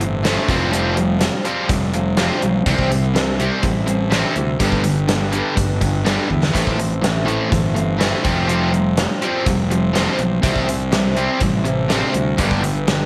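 A straight 4/4 pulse at 123 BPM drives this brooding classic rock excerpt, where a punchy, gated 80s drum kit with a medium-tuned snare and a fill at 6.3 seconds sits up front beside a bright, double-tracked, overdriven stack guitar riff and a dark, round fuzz bass, while a full-bodied picked dreadnought acoustic with audible finger squeak fills in the background across a cycle of Fsus2, C, G and Am, all washed in moderate spring reverb and small room ambience.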